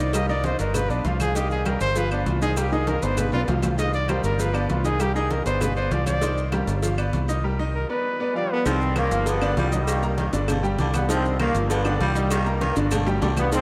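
Driving and danceable, this salsa excerpt in C minor moves at 197 BPM over a steady, straight alternation between Cm7 and G7, with a jazz-style trumpet soloing in a close-miked, scooped voice until 8.6 seconds. A brilliant, punchy trombone section takes up the melody from 8.3 seconds, and from 8.7 seconds a raspy, distant baritone saxophone adds a gritty second line. Beneath them a bright, woody upright piano with short sustain comps throughout, a dark, round fingered electric bass sits up front, and a percussion bed of ringing low-tuned congas, a tight high cowbell, vintage metal-shell agogo bells and timbales, woody claves and grainy maracas keeps the groove busy, with drum fills at 3.3 and 12.6 seconds. The whole band sits in a vast, echoing cathedral reverb.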